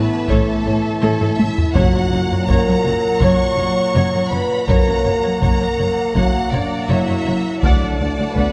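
Soaked in wet concert-hall reverb, this dramatic, heroic cinematic orchestral cue at 82 BPM, cut from a longer piece, sets a clear, distant violin melody with vibrato over a darker second violin line with portamento and mellow French horns and roomy trombones holding sustained chords. At 0.3 seconds a dark viola accompaniment enters with a background bass of woody double basses and intense cellos, while close, dry taiko with hard sticks drive the pulse and play a fill. Round soft-mallet timpani sound from 1.8 to 2.8 seconds as the harmony moves from A to F# and finally D.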